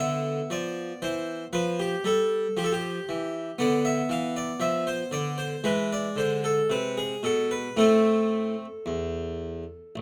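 Close, detailed microphones and light reverb frame an airy, plucked solo harpsichord in the French style, its full sound from two sets of strings placed up front, as this flowing, dance-like baroque-style suite movement moves with rubato at 55-59 BPM in 4/4 through G7, Bdim/D and E7 to settle in A minor, spanning A1 to F5 in a 10-second cut from a longer piece.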